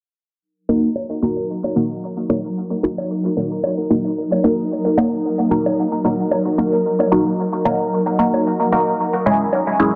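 Swung sixteenths at 112 BPM in 4/4 carry this deep, nocturnal dub techno fragment in Eb phrygian: a muted, detuned filtered chord stab with phaser and dub echo sits up front from 0.7 seconds, tape-warm electronic bongos with their own dub echo join at 1.0 seconds, and a bright, blurred granular cloud pad holding sustained chords enters at 1.4 seconds under a filter sweep, the mix set in a moderate spring reverb and a dense, heavily limited master as the harmony moves from Ebm to Dbm.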